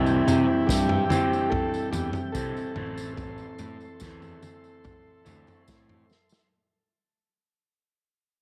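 Opening at once with an up-front vintage combo organ melody bathed in spring reverb and tape echo, a round tonewheel organ holding sustained chords through a slow rotary speaker in the background, a lo-fi, slightly broken-up guitar riff with flanger and a punchy fuzz-overdriven bass, this mysterious, hypnotic psychedelic rock fragment in A minor at 72 BPM adds jingly tambourine and, at 0.3 seconds, a dark, smooth vintage drum kit, shifting from C to Am at 2.8 seconds under a moderate plate reverb as it fades out across its length, ending on a drum fill from 6.1 seconds.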